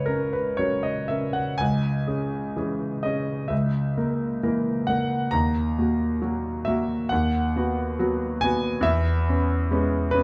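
A gently rubato pulse in 4/4, drifting between 59 and 70 BPM, shapes this tender, serene romantic nocturne for solo piano, a brief fragment lifted from a longer piece. A clear concert grand carries everything alone from 0.0 to 10.2 s, spanning C#2 to A#5 with a natural tone and a deep bass. The harmony moves unhurriedly from F# through C#m, A#dim/C#, D#m and B/D#, settling on C#m7/E, and each chord is given room to breathe. The sound is set in a large studio with a wet reverb of 1.2 s, heard from further back in the room, which lends the piece a spacious, quietly reflective atmosphere.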